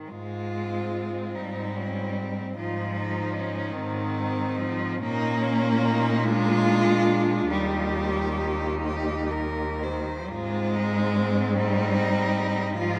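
Bathed in a vast, echoing cathedral reverb, this lyrical and tender classical passage for cello ensemble unfolds in a rubato 6/8, with a warm, expressive melody cello sitting up front with vibrato and portamento and entering at 0.5 seconds, a rich, smooth, even bass cello, a focused second-line cello, and a rich, even accompaniment cello in the background.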